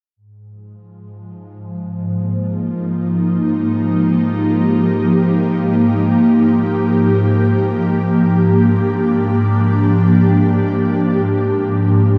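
This ambient excerpt feels serene and luminous. A lone airy pad enters at 1.7 seconds and carries the piece to 12.2 seconds: a mellow blend of detuned sawtooth and triangle voices with a breathy noise layer, slow to bloom and long to fade, sitting up front through ensemble chorus, phaser and dub echo. A wet spring reverb and echo-heavy mix give the sound a hazy cassette-tape softness.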